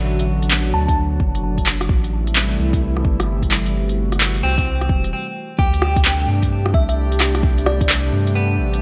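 Wistful and nocturnal, this future garage fragment swings its sixteenths over a breathy, detuned pad and a round, soft dub sub bass, both pumping with sidechain, while a clean, picked electric guitar with delay returns at 4.4 seconds. A deep house kit of smooth hi-hats, handclaps and rim clicks sits up front beside a deep, layered electronic kick, and the groove halts briefly at 5.1 seconds as the chords move from Bm and Am7 to D7sus4. A sparkling, bell-like FM electric piano adds short chorused and phased melodic touches with delay, all set in a lush hall reverb with a bright 1980s-style digital sheen.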